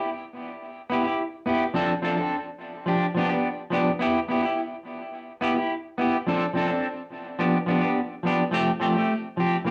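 A lone clean electric guitar, picked, up front and warm in tone, carries this sunny, carefree highlife excerpt at 106 BPM in a straight 4/4, moving through Em, F6 and G7 before shifting to Fadd9 at 8.5 seconds, with harmonic tremolo, tape echo and cassette-tape grain coloring its sound in a small, booth-like room until the piece breaks off at 9.7 seconds.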